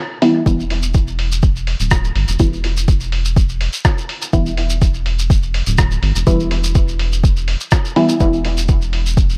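This hazy, hypnotic dub techno excerpt opens at 0.2 s with a muted, detuned sawtooth chord stab steeped in chorus, phaser and dub echo, its filter sweeping throughout, alongside a muffled, pitched-down sampler-style kit of hi-hat and rim click, before an overdriven, up-front electronic kick, a round, sidechain-pumped analog bass and a grainy, echoing shekere join at 0.5 s in an echo-heavy mix with light reverb and digital ambience.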